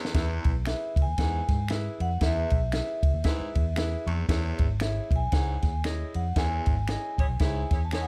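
Danceable and warm, this brief excerpt of uptempo 1960s-style soul swings in 4/4 at 116 BPM in E major, moving from E to C#m, with a punchy cocktail drum kit up front and a round, foam-muted electric bass driving beneath a raspy, breathy baritone saxophone riff and a ringing soft-mallet vibraphone melody with slow motor vibrato. An intimate grand piano with audible action noise adds accompaniment and a fill at 3.5 seconds, while finger snaps sit dry in the background. A smooth-topped saxophone section enters at 7.2 seconds with a second line during a band accent, all in a close, nearly reverb-free sound.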